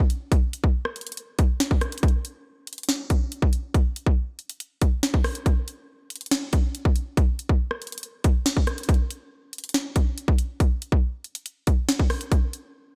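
A lightly reverberant mix puts a lone electronic drill drum kit up front in this tense, dark hip hop fragment, taken from a longer piece and running at 140 BPM in 4/4 with a half-time feel. The kit plays from 0.1 to 12.6 seconds, pairing a hard-clipped kick and a sharp snare with rim clicks and bright hi-hats. A new section begins at 8.9 seconds.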